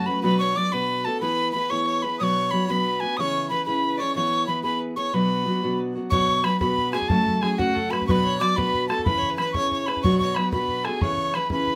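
A Celtic jig in a straight 6/8 at 122 BPM counted in dotted quarters drives this short, dark and lively folk excerpt in B dorian. An airy metal tin whistle carries the melody up front, its crisp chiff and lifted highs shaded with vibrato, while a single bowed fiddle plays a clear, earthy second line close beneath it with light vibrato. A full-bodied, fingerpicked steel-string dreadnought guitar sits up front as accompaniment, moving through chords centred on Bm, E and C#m. The tune is played twice, and on the repeat at 6.1 seconds a damped, tight bodhran joins, playing until 11.7 seconds. A moderate small-room reverb gives the ensemble a close, intimate space.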